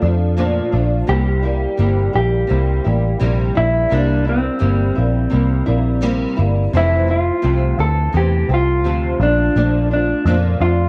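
Laid-back and sunny, this indie and bedroom pop passage, taken from a longer piece, sets a mellow, up-front electric guitar melody, clean and compressed with subtle chorus and tape echo, over a fingerpicked flamenco guitar accompaniment treated with analog chorus and a vibrato effect. Beneath them sits a vintage, foam-muted picked electric bass, round, amped and forward in the mix. The harmony moves from Bbmaj7 to C7, settling on Fmaj7 at 6.7 seconds before returning to Bbmaj7, all in a light studio reverb.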